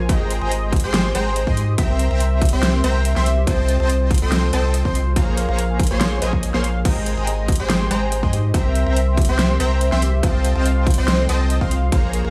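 Bright and euphoric, this future bass excerpt at 142 BPM in a half-time 4/4 feel pairs a velvety, detuned synth lead melody with chorus and dub echo against thumb-plucked, ringing Celtic harp arpeggios in the background, a deep, thick saturated sub bass and punchy, detuned supersaw stabs with filter sweeps and cassette-tape colour, all four pumping from sidechain, while a hard-clipped, up-front electronic kick and a layered, overdriven big-room kit with a huge snare, metallic hi-hats and crash cymbal drive an Abmaj7 to C7 to F7/C to Bbm9 progression.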